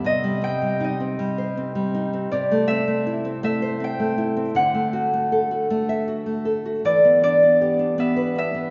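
A long, wet church reverb surrounds this short cut from a children's lullaby in a gentle three-time, its sound soft and dull at the very top. Up front, a ringing, fingerpicked Celtic harp carries the tender, innocent melody, while a warm classical nylon-string guitar with fresh strings plays the accompaniment alongside it. Both parts sound together for the full 8.7 seconds.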